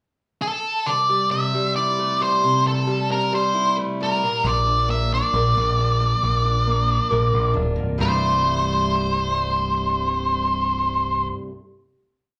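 A straight 4/4 pulse drives this short, cathartic and anthemic quiet-loud alternative rock piece, heard live through a club PA with light reverb: a dark, up-front octave-fuzz lead guitar with slapback echo carries a motif-based melody over fresh-stringed acoustic archtop arpeggios, also touched with slapback, and a growling, overdriven electric bass enters at 4.4 seconds with simple root-and-fifth lines before the trio rings out on a final chord at 8.0 seconds.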